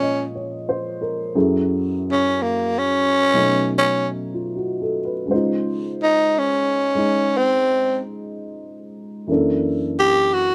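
In a lilting swung 4/4, this short excerpt of a melancholic, smoky jazz ballad features a growling, breathy, raspy tenor saxophone up front, playing a soulful solo melody over a dark, woody, boxy upright piano whose long-sustained chords drift through Bbm7, Gbm7, B9 and Dbmaj7 before landing on Gb7alt, all captured by close, detailed microphones in a light reverb.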